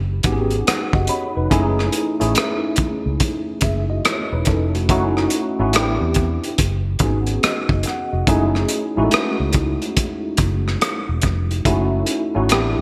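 A slow 71 BPM groove in 4/4 with a 64% swing on the sixteenths sets a soulful, late-night neo-soul and R&B mood in F# dorian, in this short cut from a longer piece. The crunchy breakbeat drum kit enters at 0.2 seconds, sitting up front with a tight kick, hi-hat and rim click, its saturated, gritty character softened by a rolled-off top and wrapped in gated reverb. Underneath, a vintage muted fingered electric bass starts the recording at 0.0 seconds, its foam-muted, round tone staying low between E1 and E2. A mellow tine electric piano, worn and slightly out of tune, plays through a combo amp with an ensemble chorus, moving through G#m7/F#, F#m7, F#m13 and a brief Am7 before circling back, with a fill opening the passage at 0.2 seconds and another at 12.5 seconds. The whole is set in a moderate plate reverb with a bright 1980s-style digital production sheen.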